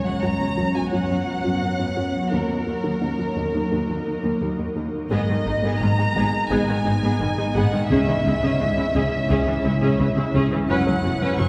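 Brooding and tense, this cinematic passage from a longer piece opens with a lush violin section singing the melody with vibrato over a cello section bass line, while an ethereal, airy pad with ensemble chorus holds sustained chords and a very quiet, squelchy resonant pluck runs arpeggios beneath. At 5.1 seconds a viola section enters with bowed accompaniment and a double bass section deepens the low end, both smooth and rich. The strings and synths sit in the long, wet reverb of a church or concert hall.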